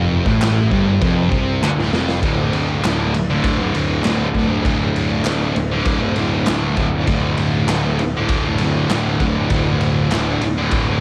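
A dry, lo-fi cassette home recording of rowdy, swaggering garage rock at 99 BPM, cut from a longer piece, where a thick, double-tracked fuzz guitar riff sits up front over a round, overdriven fuzz bass and a gritty, saturated garage drum kit with a punchy kick in a pumping stone room, while hollow group handclaps sit distant in the background and a drum fill from 1.6 to 2.2 seconds carries the tune into its next section.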